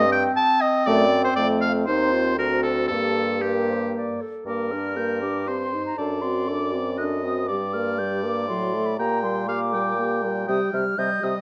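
A quick classical-period wind quintet movement in G minor at 119 BPM in 3/4, restless and urgent, in which a pure concert flute with expressive vibrato carries the melody over a present, up-front oboe second line, while a smooth-topped clarinet and a lightly vibrating French horn fill the accompaniment and a clear, forward bassoon anchors the bass, all set in a moderate large-studio reverb with a dark, warm production across this 11.4-second section cut from a longer piece.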